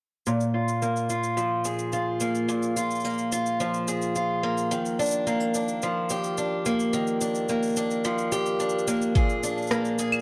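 Folktronica at 108 BPM in a straight 4/4, hopeful and playful, this short excerpt from a longer piece centers on an up-front, boxy acoustic archtop guitar picking arpeggios through a low-pass filter and delay, finger squeak audible, moving from Bb5 to Ebmaj9 and then Bb7. Overdriven electronic cabasa, rim click and claves sit low beneath it, and a soft, overdriven electronic kick lands up front only at 9.2 seconds as the closing section arrives. A moderate echo-chamber reverb gives the dark production a roomy depth.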